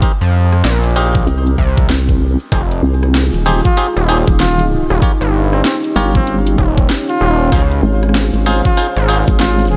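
Lightly reverberant and gritty, this playful glitch hop cut at 96 BPM in F minor swings its 16ths over an up-front, overdriven electronic kick with a knocking punch and an overdriven kit of cracking snare, bright hats and rim clicks, while a distorted, nasal sawtooth synth bass grinds under stringy clav stabs played through a combo amp with sidechain pumping and tape echo; a resonant, formant-filtered wobble bass with chorus joins at 1.3 seconds, a moody, detuned analog pad with chorus and sidechain pumping enters at 3.1 seconds, and a mellow, breathy jazz trumpet with vibrato and tape echo takes the solo melody from 3.6 seconds over Cm7, Fm7, Eb7 and Dbmaj7.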